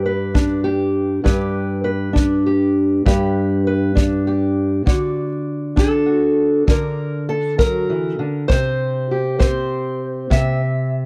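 Rollicking and gritty, this short cut from a longer acoustic country blues piece moves in a steady 12/8. A fingerpicked steel-string parlour guitar carries the melody from the very start, its dark, boxy tone sitting up front as it ranges from G2 up to E5. A kick drum joins at 0.3 seconds, punchy and close, with a small-room character and a brushed touch, placed just as far forward as the guitar. The harmony moves from G to D at 4.9 seconds and on to C at 8.5 seconds. The sound is dry and intimate, in the manner of a close 1970s-style studio recording.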